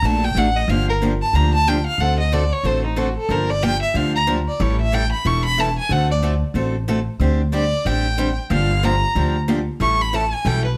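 A rich, expressive bowed violin with vibrato, portamento and a soft attack carries the melody throughout this bittersweet, swinging excerpt of acoustic gypsy jazz in G minor at 184 BPM, its plate reverb set over a bright, boxy picked steel-string parlour guitar and a woody, thumpy gut-string upright bass played pizzicato, all three up front in a lightly reverberant space as the chords move through Gm7, D7 and A7.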